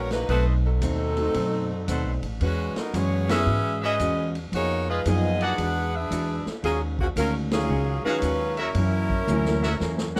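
A warm saxophone section with vibrato carries the melody up front in this brassy, dramatic big band swing excerpt at 114 BPM, over a woody pizzicato upright bass, a dark, clean hollow-body archtop guitar, a vintage drum kit with a punchy kick, tight, brilliant trumpet stabs and a smooth concert grand piano in the background, with band accents at 3.2 and 7.4 seconds and a drum fill from 9.3 seconds.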